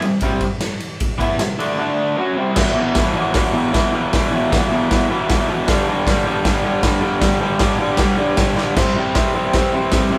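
A raw, live-in-one-room sound fills a large studio with a moderate reverb, and both instruments sit up front in this swaggering, rowdy garage rock cut from a longer piece. A bright, overdriven electric guitar, picked and double-tracked, drives a riff built on power chords moving from C5 to D5 and back before shifting to E5 at 2.6 seconds, then G5 and finally C5 again. Beneath it, a gritty, saturated acoustic drum kit with a punchy kick and medium-tuned snare pumps in a stone room, its top end rolled off, working across crash, ride, hi-hat, kick and snare in a straight 4/4. A drum fill at 8.6 seconds sets up the return to C5, and the drums stop at 10.0 seconds while the guitar carries on to 10.2 seconds.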